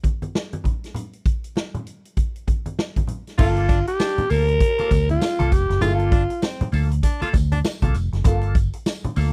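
Funk with a hypnotic, sly mood and a swung sixteenth-note feel, opening on a punchy, up-front big-band drum kit of kick, snare, hi-hat and crash alongside low-tuned, ringing congas. At 3.4 seconds the harmony settles on Gm9 as a dark, round, foam-muted fingered bass, a twangy clean guitar through wah and a jingly tambourine in the background join, while a breathy, raspy alto saxophone carries the melody over a smooth baritone saxophone second line. The recording is dry and close in a 1970s studio style, cut from a longer piece.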